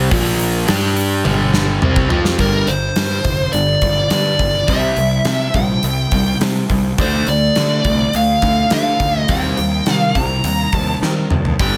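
A bright, double-tracked semi-hollow guitar riff and a round, fuzzed-out picked bass open this menacing, aggressive hard rock excerpt over a polished, gated 80s drum kit with a tight kick, before a dark, smooth overdriven lead guitar with analog delay takes up the melody at 2.4 seconds, all framed by a moderate studio ambience and drum fills at 1.3 and 11.0 seconds.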